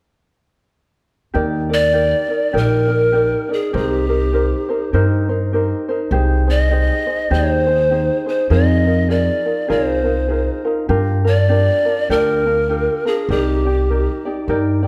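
A gently swung eighth-note lilt in four carries this languid, dreamy Hawaiian excerpt, where a light, thumb-plucked ukulele and a woody, thumpy pizzicato upright bass on gut strings enter at 1.3 s beneath a breathy bamboo pan flute melody, tongued with a soft chiff and vibrato, that begins at 1.7 s, all three sitting up front in a moderate recital hall reverb as the chords move from Ebmaj7 through Abmaj7/C and Fm7 to a closing Cm9.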